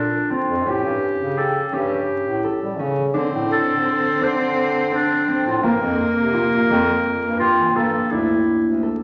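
A soft-attack clarinet carries the restless, pensive melody of this contemporary chamber excerpt in 7/8 over ringing, thumb-plucked harp arpeggios and a vintage-toned bass clarinet line, while an earthy, closely heard cello with light vibrato adds a second line from 3.1 s, all set in a recital-hall reverb with vinyl crackle.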